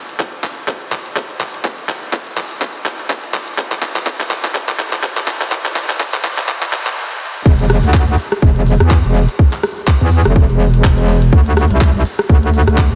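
Crisp garage hi-hats, handclaps, rim clicks and crash, tape-warmed and re-recorded in a large room, open this swaggering, gritty bass house cut alongside a tight, up-front electronic kick, driving a drum fill through the build-up to a brief stop at 7.0 seconds before a metallic, saturated FM wobble bass with overdrive, chorus and sidechain pumping slams in at the drop at 7.5 seconds under a light reverb.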